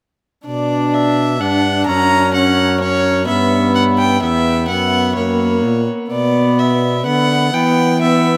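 Entering together at 0.5 s, a rich, gut-string violin melody rides over a nasal, lightly vibrato viola and a mellow, smooth-topped trombone bass in this solemn, courtly renaissance-style consort dance in B harmonic minor at 127 BPM in 3/4, all three played up front in a vast, echoing cathedral space, with the cut from a longer piece ending at 8.4 s.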